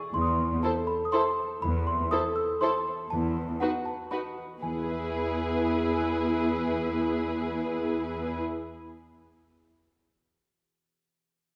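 Quirky and playful, this whimsical cinematic film cue moves at 120 BPM in a straight 3/4 in E major, cut from a longer piece. A small celesta carries the melody with a bell-like, sweet sparkle from its hard felt hammers, while a concert harp rings out fingerpicked arpeggios beneath it. Muted strings played con sordino give the cue a veiled, dusky shading: a cello section holds the bass up front, violins share a soft-attack melody and a smooth second line with light vibrato, and violas fill in the accompaniment. The cellos enter at 0.1 seconds, with the violins and violas joining together at 0.6 seconds, and all the strings fall away at 8.4 seconds, leaving the celesta and harp to finish, with the harp ringing last until 9.2 seconds. The harmony moves from Am/E to B7/E before settling on E as the second section begins at 4.6 seconds, all held in a moderate scoring-stage reverb.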